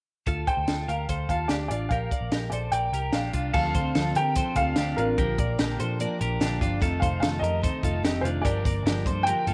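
A straight 4/4 beat at 147 BPM from an up-front, punchy compact cocktail drum kit with a high-tuned snare and dark cymbals drives this youthful, nostalgic jangly indie pop excerpt, where a bright, twangy twelve-string electric guitar plays clean, compressed arpeggios over a round, foam-muted vintage electric bass, a worn, woody, slightly detuned upright piano with audible action noise carries the melody through tape echo from 0.5 seconds, and a full-bodied jumbo steel-string acoustic guitar with fresh strings joins in accompaniment at 3.5 seconds, the whole sitting in a wet spring reverb as the chords move from Dm7 and Bb6 through F7 to Gm7.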